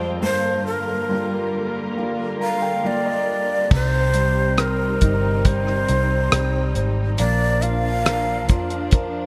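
Emotional and heartfelt, this slow pop ballad moves at 69 BPM in a straight 4/4, cut from a longer piece. A clear concert grand piano with a lush chorus, audible action noise and long sustain carries the accompaniment over a veiled, con sordino string section bowing distant sustained chords with vibrato. From 0.2 seconds a breathy, close-miked shakuhachi sings the melody up front, its crisp chiff trailed by digital delay, while the piano plays a fill from 2.0 seconds as the harmony rests on Gm7. At 3.7 seconds, as the chords move to Cm and later Bb, a foam-muted, round and punchy electric bass joins with a damped 70s drum kit whose tight kick, rim click, hi-hat and crash sound dry and rolled-off. A moderate plate reverb and bright 1980s-style digital production frame the whole.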